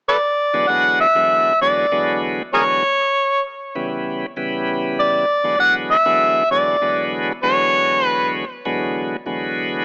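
Rollicking and gritty, this short blues excerpt puts an amplified, overdriven harmonica up front from 0.1 seconds, its punchy pop-style solo carrying a light vibrato and tongue slaps over chords moving from E9 to C#m7b5 and back. A bright tonewheel organ joins at 0.5 seconds with full, shouting accompaniment, lightly overdriven with audible key click through a slow rotary speaker, and it carries on alone after the harmonica stops at 8.3 seconds. An echo chamber reverb and a small-speaker sound give the mix a boxy, roadhouse character.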